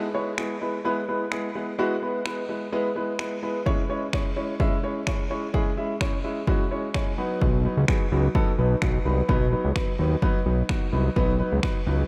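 A fat, saturated analog bass stands out most, arriving at 7.4 seconds with a thick, detuned sawtooth and square-wave tone, ring modulation, wave-folding, a filter sweep and sidechain pumping, sitting up front in this dance-pop fragment at 128 BPM in straight 4/4. Beneath it, a concert grand piano carries the accompaniment from the opening, its intimate, natural sound revealing audible action noise and deep bass, with a short fill between 6.7 and 7.4 seconds. A punchy analog drum machine supplies kick drum and finger snaps, its electronic tone re-recorded in a large room yet still placed up front. The harmony moves from E to C#m to B, giving the energetic groove a bittersweet edge. A huge ambient reverb with a 3.8-second tail soaks the mix, lending it a dreamy haze, and the piece is cut from a longer work.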